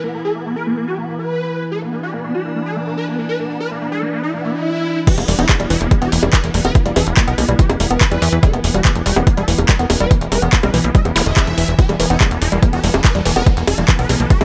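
Psychedelic trance at 143 BPM in E minor, hypnotic and driving, opens on a swarming, detuned rave lead with gritty sampler texture, phaser and delay over a morphing wavetable pad in the background, both pumping against the sidechain, until a background swell and zap at 4.4 seconds leads into the drop at 5.1 seconds, where a punchy up-front electronic kick, a drum kit with bongos, handclaps, crash and filtered metallic hats, a woody wave-folded pluck riff with tape colour, and a funky plucky analog bass entering at 5.2 seconds drive this cut from a longer piece in a dry mix.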